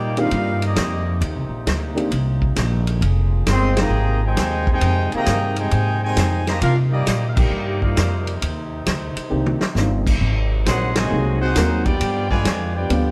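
A brassy, sultry big band swing fragment in C minor at 134 BPM opens on a clear, vibrato-laden trumpet section carrying the melody over a warm trombone second line, punchy background trombone chords and a woody pizzicato upright bass, with a vintage kit of dark cymbals and a tight kick joining alongside a dark, intimate upright piano that falls away after 3.9 seconds and returns at 9.3 seconds with a drum fill, while the full band punches out accents, all heard from further back in a lightly reverberant room with lossy compression artefacts.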